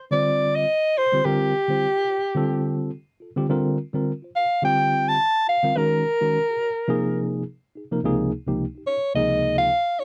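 A lightly swung sixteenth-note feel in 4/4 drives this funky, soaring jazz fragment, cut from a longer piece, as chords drift from Fsus2 and Csus2 through Bbadd9 and Ebm7 to settle on Dbmaj9. Up front, a soprano saxophone sings the solo melody with vibrato and a smooth top, touched by a slapback echo. Beside it, a worn, slightly out-of-tune tine electric piano comps cleanly through its built-in speakers, all in a dry, close 1970s-style studio sound with light reverb.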